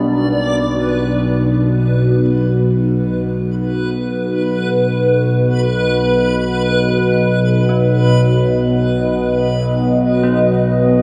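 Dark ambient drone in free time and B major, cavernous and unsettling, cut from a longer piece and steeped in a wet cathedral reverb with a six-second tail. Up front, a resonant sawtooth-and-sine drone with moving overtones and a phaser holds the low end on B, while a deep, moody pad of detuned sawtooths with a sub octave and a moving notch sustains chords above it, and a reversed, dreamy granular texture swells brightly on a single high B. At 7.7 seconds a very quiet, eerie FM bell enters with inharmonic, full-bodied arpeggios colored by chorus and tremolo.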